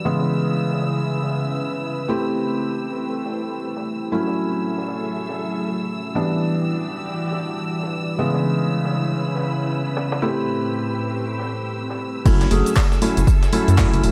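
Smooth and warm, this deep house excerpt sways with a swung 4/4 groove, cut from a longer piece. A silky, warbling string machine holds sustained chords under a filter sweep, while a felt-muted upright piano, mellow and up front, plays stabs through delay, both breathing with sidechain pumping. High above, a distant, lushly bowed violin section adds texture, and a deep, moody ambient pad sits very quietly beneath, as a gritty, pitched-up breakbeat kit of hi-hat, snare and tambourine ticks in the background from 0.1 seconds. At the drop at 12.3 seconds, a rubbery, bouncy square bass arrives with a punchy electronic kick and a layered house kit of crash, handclaps, hi-hat and shaker. The whole has a bright 1980s-style digital sheen, light reverb and a bed of vinyl crackle.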